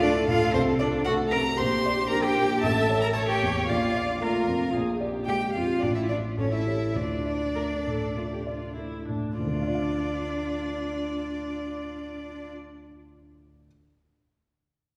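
An urgent, restless D minor piano quartet movement in a quick classical-period style, cut from a longer piece, opens with a rich, focused bowed violin carrying the vibrato-laden melody over a close, smooth cello second line, a distant viola and a dark, mellow, up-front baby grand piano, moving at 97-116 BPM in straight 4/4 and slowing between 3.7 and 9.4 seconds before the strings stop at 12.5 seconds and the piano carries on alone in a wet recital hall.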